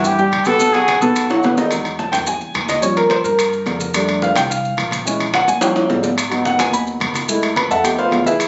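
An intimate grand piano with audible action noise takes a solo from 1.7 s in this sunny, sophisticated Afro-Cuban jazz excerpt at 216 BPM, after a brief opening phrase from a mellow trumpet with scooped notes, shadowed by a very quiet, airy flute, all over woody pizzicato upright bass, low-tuned congas in the background, grainy maracas and ringing metal-shell timbales that enter at 0.3 s, with drum fills along the way, captured on a phone in a club-like room whose sound dulls the top end.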